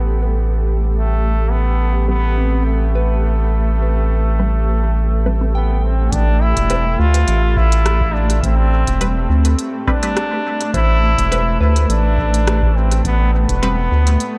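A brilliant, distant trombone with light vibrato and dub echo carries a meditative melody over a round, up-front analog bass, a blurred granular cloud pad with sampler grit, and soft chorused FM bell arpeggios under a filter sweep, joined from 2.1 s by very quiet muted, resonant dub chord stabs and from 6.1 s by a deep electronic kick and a crisp, echoing electronic kit of hi-hat and rim click, in this spacious ambient dub excerpt with a lightly swung feel.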